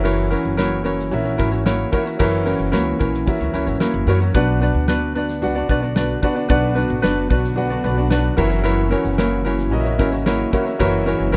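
Acoustic pop with a heartfelt, carefree mood, this short excerpt sets a bright, fingerpicked ukulele and a woody pizzicato upright bass up front over a small-room country drum kit of punchy kick, snare and shaker, while a full-bodied nylon-string guitar with finger squeak plays arpeggios touched by slapback echo, an intimate concert grand piano with audible action noise adds accompaniment, a very quiet, ethereal pad with granular shimmer slips in at 5.8 seconds, and the piano plays a fill at 7.6 seconds, captured by close, detailed microphones with light reverb.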